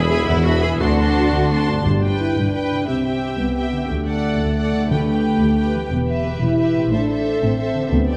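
In a straight 12/8 feel, this heroic, adventurous film-score excerpt sets lush, vibrato-rich violins on the melody and a second violin line over background violas, a mellow French horn section holding sustained chords, ringing fingerpicked harp arpeggios, and a low end of cellos, woody double basses and a distant tuba, while pure flutes, a punchy oboe, a barely audible clarinet and very quiet, clear trumpet stabs color the opening until 1.7 s, and round soft-mallet timpani enter at 1.9 s, all set in a wet scoring-stage reverb.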